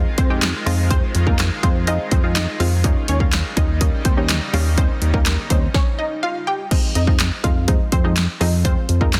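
Bittersweet yet confident, this dance-pop excerpt in F minor moves at 124 BPM in a straight 4/4, cut from a longer piece and built around a drop that shifts from Fm7 to Eb7 and back to Fm7. A lush, detuned unison pluck carries the melody with a bright, wave-folded bite and tape echo, while a punchy sawtooth chord stab fills in the harmony with a short, chorused snap. Beneath them, a shimmering, ethereal pad with an octave-up sparkle and granular warble sustains the chords through its own built-in reverb until 5.7 seconds, and a dark, glossy chorused synth bass sits prominently in the low end. The electronic house drum kit, entering at 0.2 seconds, is up front with a punchy kick and snare alongside handclaps, hi-hat and crash cymbal. Most parts pump against the sidechain, and a stop between 5.7 and 6.7 seconds breaks the drop before it returns, all within a dry, dense and heavily limited modern master.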